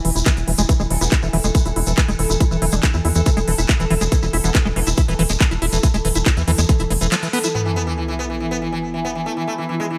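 A pulsing gated texture, a squelchy, filter-swept liquid acid bass and a saturated, punchy sequencer bass open this alien, intense psychedelic trance excerpt over a drum and bass kit with crisp hats, a tight, up-front electronic kick and a grainy shekere, joined at one second by a very quiet, juicy blip pluck, until an impact at 7.5 seconds brings in a sub drop, a buzzing, shimmering sitar with phaser and delay, and a warbling, lo-fi tape-like pad.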